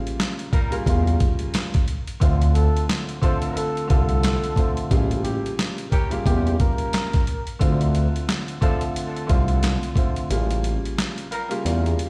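Gritty, pitched-down boom-bap drums with a thumpy kick sit up front in this tough, reflective, swung hip-hop cut, joined by a smooth, nasal, detuned synth bass, an intimate, woody upright piano with audible action noise and cassette-tape color, distant, punchy horn-section stabs touched with tape echo, and a veiled, breathy bucket-muted trumpet that carries a jazz-style solo melody from 2.5 to 7.6 seconds, all sounding as if played over a big sound system in a bare stone room, while the kick drops out from 10.3 seconds.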